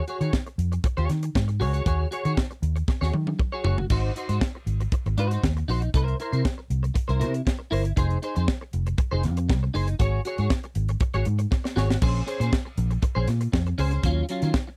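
A clean, picked, scooped electric guitar with ensemble chorus opens this driving, glamorous disco cut at 118 BPM, joined by a tight funk drum kit with bright cymbals and a high-tuned snare, and then a dark, round, foam-muted fingered electric bass that sits up front. The harmony moves from Ab7sus4 through C7 and Fm7 to Bbm9 and Ebm9, with drum fills at 2.9 and 11.5 seconds, all in a dry, close 1970s-style studio sound.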